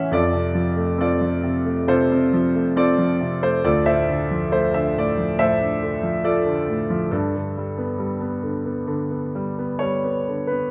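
Unhurried rubato at 68 BPM in 4/4 carries this calm, peaceful classical fragment, where a clear, up-front concert grand plays alone from D2 to F#5, its deep bass and open tone caught by close, detailed microphones in light reverb as the harmony drifts from F to Dm7 at 3.6 seconds and Gadd9 at 7.1 seconds.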